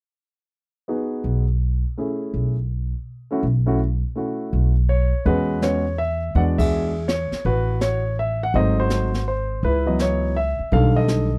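Dry and close, this cut from a longer piece has the intimate feel of a 1970s studio session, with little reverb around the players. It is a jazz piano trio in 3/4 at 165 BPM, swinging its eighth notes with a relaxed, warm lilt. A polished, present grand piano carries the melody up front with short sustain, joined almost at once by a woody, dark pizzicato upright bass on steel strings, also placed close to the listener. At 5.3 seconds a brushed drum kit enters, sitting lower in the mix with a high-tuned snare, boomy kick, hi-hat and dark ride cymbal heard in a small room. That entry marks a shift in the harmony from B6 to E69, moving on through A69, G#7b9 and C#m11 to a B7alt, and the whole band lands a shared accent at 6.5 seconds.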